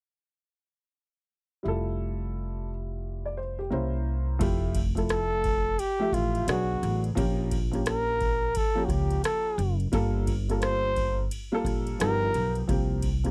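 A breathy flugelhorn carries the melody in this short jazz-hop clip, its soft attack, whispered tone and gentle vibrato sitting up front from 5.1 seconds, moving between F4 and C5 over an 87 BPM swing in F major. Beneath it, a dark upright piano with a worn, slightly detuned character and audible action noise plays accompaniment from 1.6 seconds, joined almost at once by a woody, pizzicato upright bass on steel strings. The harmony moves through rich jazz chords such as Fmaj9, C7b9, Bbm6 and Gm9 before settling on an altered G7 and a C7sus4. At 4.4 seconds a booming analog drum machine enters with a deep kick, metallic hi-hats, ride cymbal and rim clicks, re-recorded in a small room and placed up front. The dry, close 1970s-style studio sound carries little or any reverb, and the mood feels both warm and cool.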